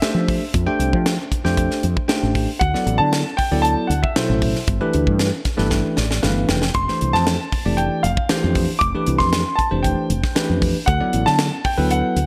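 Electric jazz fusion at 116 BPM in a straight 4/4, set in F lydian with a soaring, slick mood, this excerpt is cut from a longer piece. A present grand piano carries the melody between E5 and D6, over a bell-like tine electric piano that supplies bright, clean accompaniment through a lush chorus. Underneath, a woody fretless electric bass sounds dark, growly and round, its tone thickened by analog chorus, while a crisp fusion drum kit of hi-hat, kick and snare brings an airy, polished feel with a high-tuned snare, tight kick and gated reverb. Around 5.7 seconds the drums and the tine electric piano both play a fill that runs to 6.7 seconds. The harmony moves through rich extended chords, starting on Fmaj9, passing through D9 and G9, returning to Fmaj9 and landing on Dadd9 near the close. Light reverb and studio ambience frame a bright 1980s-style digital production.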